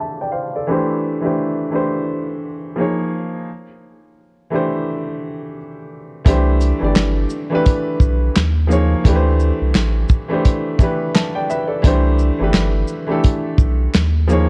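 Lo-fi hip hop at 86 BPM in C major, nostalgic and cosy, with a swung 16th-note feel in this excerpt from a longer piece. A woody, vintage upright piano plays accompaniment alone for the first 6.3 seconds, its smooth, short-sustained tone coloured by cassette tape and a low-pass filter, with a filter sweep running through that opening. At 6.3 seconds a deep, round sine sub bass and an up-front acoustic soul drum kit of kick, snare, hi-hat, handclaps and shaker enter, the kit mid-forward with a tight kick and a rolled-off top, in a dark production touched with light studio reverb.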